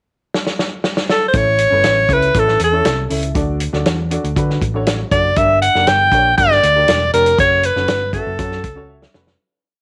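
Uptempo 1960s-style soul at 119 BPM in a straight 4/4, this short, danceable piece opens with a drum fill from 0.3 seconds through the pickup bar before the bright alto saxophone enters at 1.1 seconds, sitting up front with light vibrato, subtone and scooped notes as it states a motif-based, jazz-style melody of call phrases. The soul drum kit is acoustic and dry, with a punchy kick, a medium-tuned snare and hi-hat in a backbeat groove, its top rolled off. From 1.3 seconds the hollow-body, short-scale electric bass plays a round, dark, amped and syncopated line with chromatic approach notes, while the upright piano adds woody, slightly detuned close-voiced rhythmic chords with audible action noise and short fills, tucked low in the mix. The pre-chorus moves through A, D, G minor and F-sharp minor in a small room with light reverb. A fade-out begins at 7.4 seconds, with a piano fill and a final drum fill closing out the last moments.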